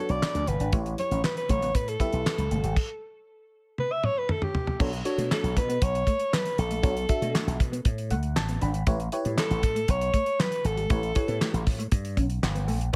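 Lightly reverberant and slick, this late-night early-eighties boogie funk excerpt at 118 BPM opens with a breathy, vibrato-laced alto saxophone solo full of scooped notes up front, over a glassy, bell-like FM electric piano with chorus and phaser, a dark, clean electric guitar riff in the background, a bright, punchy slap bass through an envelope filter, a dry 70s drum kit with fat snare, tight kick, handclaps and gated reverb, and very quiet thin-skinned congas, with a stop at 2.8 seconds and a drum fill from 3.8 seconds before the piano adds its own fill at 7.8 seconds.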